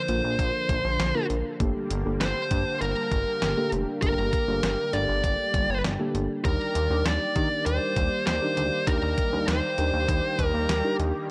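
A distorted, high-gain electric lead guitar sits up front over a smooth, detuned analog pad from the opening, carrying a wistful melody through tape echo while the chorused pad sustains chords moving from Bb to Gmadd9 and on to Ebmaj7. A moment later, muted, felt-like synth keys add soft, dark accompaniment, a glossy, nasal pulse-wave synth bass holds the low end, and a clean 12-bit drum machine supplies a thumpy kick, fat snare and hi-hat with a sampler-style, small-room character. Light reverb gives this nostalgic synth-pop passage, cut from a longer piece, a gentle sense of space.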